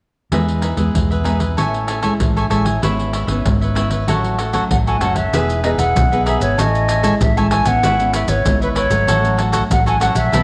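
A lively, joyful samba-choro groove in E major at 96 BPM opens with crisp picked cavaquinho, fingerpicked classical nylon-string guitar, a dark, round, foam-muted electric bass and up-front surdo, pandeiro and maracas cycling through Emaj7, Amaj7, C#m7/G# and F#m/A, until an airy, distant silver concert flute with a straight tone enters at 4.7 seconds to carry the melody through a moderate echo-chamber reverb in this short excerpt from a longer piece.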